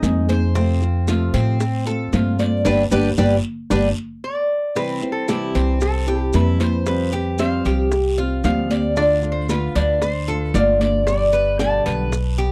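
Relaxed and unhurried, this excerpt of Cuban son and guajira moves at 114 BPM in C major, with a woody pizzicato upright bass and a picked, metallic-edged Cuban tres spinning arpeggios on doubled strings up front, while a dark, fingerpicked flamenco guitar fills in the accompaniment. Bright, high-tuned congas, tight, hard-handed bongos and grainy maracas sit in the background, joined by a raspy, saturated guiro. The band holds a shared accent from 2.7 s, with a drum fill arriving at 4.5 s inside it. From 4.2 s a nasal, fingerpicked lap resonator guitar takes the slide melody over a dry, close 1970s-style studio sound.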